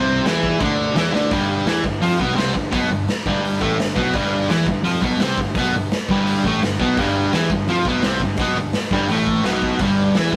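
A straight 4/4 pulse drives this swaggering, raw garage rock cut at 169 BPM in G mixolydian, taken from a longer piece. The fuzz guitar opens the riff from the first moment, sitting bright, double-tracked and compressed up front, while the picked electric bass holds down the low end with an overdriven, punchy growl. The drum kit comes in at 0.3 seconds with kick, snare, hi-hat and crash, its gritty, saturated sound carrying a medium-tuned snare and a rolled-off top. A drum fill at 1.1 seconds pushes the opening, unharmonised passage into the main section, which settles on a G chord at 1.3 seconds. The whole band plays in a moderate stone room with a pumping ambience, giving the rough rehearsal-room feel of a loud, close-quartered band.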